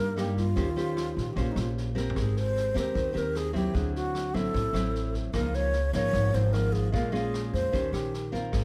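A straight 4/4 bossa nova groove carries this smooth, intimate clip from a longer piece, where a breathy alto flute with vibrato and plate reverb sings the melody up front over fingerpicked, full-bodied nylon-string guitar with audible finger squeak, a woody, thumpy pizzicato upright bass, and a studio drum kit with a punchy kick and rim clicks that joins at 0.2 s and plays a fill at 2.0 s, all wrapped in a dark production over lush extended jazz chords.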